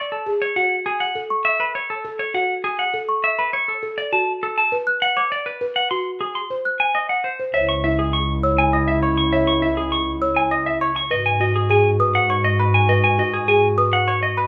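Hypnotic and propulsive, this minimalist classical pattern music in 3/4, cut from a longer piece, sets a bright, clean semi-hollow electric guitar melody up front over buzzing, woody marimba arpeggios struck with soft mallets and delicate, bell-like celesta arpeggios, until at 7.5 s a mellow clarinet second line and a rich, bowed double bass section with vibrato join, inside a moderate large studio reverb.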